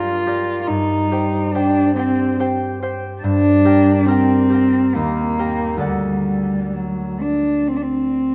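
In a flexible 3/4, the pulse drifts between 63 and 72 BPM with a rubato feel, giving this short romantic duo for cello and harp an elegiac, yearning character in G minor. A single bowed cello carries the melody from 0.0 to 8.3 seconds, its woody, dark tone shaded with vibrato and a smooth top, placed up front and sitting somewhat louder than its partner. Alongside it, a fingerpicked concert harp supplies the accompaniment across a broad span from D2 to G5, its bright, ringing strings also close and present. The harmony moves from Gm to Cm over G, returns to Gm, then passes through Eb before settling on D. A wet concert hall reverb with a 2.6-second decay surrounds both instruments, lending the fragment, cut from a longer piece, a spacious, mournful glow.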